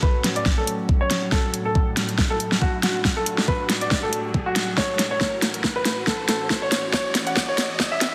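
Heavy wobble dubstep at 139 BPM in a swung half-time feel, this menacing build-up cut from a longer piece sets a warm, present baby grand piano melody, low-pass filtered with tape echo and under a filter sweep, over an evolving, detuned wavetable pad pumping with chorus and reverb through F#m, D and A6, while an overdriven knocking electronic kick and an up-front dubstep kit with a huge snare play a drum fill, and a very quiet riser creeps in at 1.5 s, all bathed in a lush hall ambience and a dense, heavily limited master.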